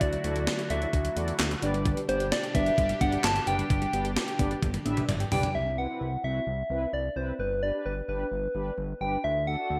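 A wistful, nostalgic synth-pop passage cut from a longer piece opens with a round, gentle FM lead melody over a swirling phased pad, a very quiet punchy unison pluck arpeggio, a fat saturated analog bass and an up-front gated 80s drum machine with a thumpy kick and overdriven gated snare, joined at 0.2 seconds by a mellow, brassy synth accompaniment, until the drums, pad and pluck stop after a fill ending at 5.5 seconds, leaving the lead, bass and brass over Cmaj7 and G in a bright 1980s-style digital mix with plate reverb.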